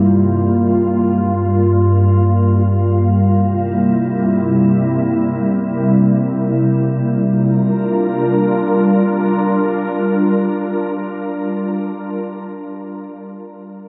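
A glassy FM pad plays alone and up front through this ethereal, hazy hip hop fragment in free time and G dorian, its slow-attack, sustained sine tones softened by ensemble chorus, tape echo and built-in reverb as the harmony moves from Gm7 to C7 and returns to Gm7 at 7.2 seconds, the whole sitting inside a huge ambient room reverb.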